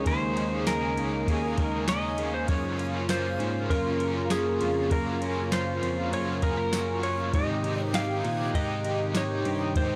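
Haunting and hazy, this dream pop excerpt drifts at an unhurried straight four, cut from a longer piece and moving from Eb7sus4 to Gbmaj7 and then Abmaj7. A clean lap steel guitar carries the melody with a bright, compressed slide tone soaked in tape echo, while a double-tracked, overdriven electric guitar adds picked accompaniment with tremolo and a subtle chorus. Beneath them, a detuned sawtooth analog pad holds smooth, soft-attack chords with chorus, and a slightly broken-up, twangy electric guitar sits in the background with fingered arpeggios through analog chorus and tape echo. A tine electric piano plays the bass line through its built-in speakers, and a very quiet reversed, granular texture swells high above with a long, bright release. A dry analog rhythm box with a deep kick, crisp snare, ride cymbal and tambourine runs from 0.1 to 9.9 seconds, and the whole mix has a gritty, transformer-saturated hardware character under light reverb and digital ambience.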